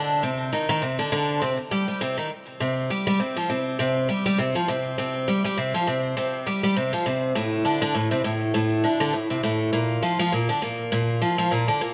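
Delicate and wistful, this short folktronica passage, cut from a longer piece, moves at 101 BPM in 4/4 with a gentle swing on the sixteenths. A picked twelve-string acoustic guitar plays alone for the full 11.9 seconds, sitting up front in the low-to-middle range between A2 and G3. Its tone is bright and shimmering, the octave-doubled strings giving each note a chiming sheen, and a tape echo trails behind the picking. The guitar sits in a moderate echo chamber with a two-second decay that lends a sense of space. Lossy compression artefacts colour the recording, and the tuning rests slightly below standard at A4 = 439 Hz.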